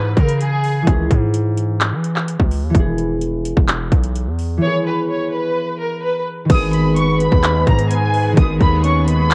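Opening on a lush, bowed violin section over ringing, fingerpicked concert harp and a heavy, saturated 808-style bass, this dark, brooding half-time hip hop and trap excerpt at 128 BPM in G# minor adds an up-front, overdriven trap drum kit of hard-clipped kick, metallic hi-hats, handclaps and crash cymbal, brings the violins back at 4.6 s, and at 6.5 s, as the harmony settles on G# minor, layers a round, soft octave-layered synth lead with chorus, phaser and analog delay over a detuned, resonant sawtooth pad in the background, the whole mix carrying light reverb and the worn, warbling pitch drift of old cassette tape.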